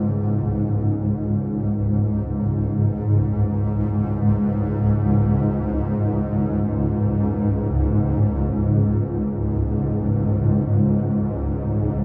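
Drifting in free time, this haunting, spacious excerpt of meditative world music is carried entirely by a solo granular cloud pad, low in register, blurred and detuned yet full-bodied and up front, its slow-attack, long-sustained tones hanging in a diffuse ambient delay and a cathedral-sized reverb that leaves the sound echoing through a vast space for the full 12.0 seconds.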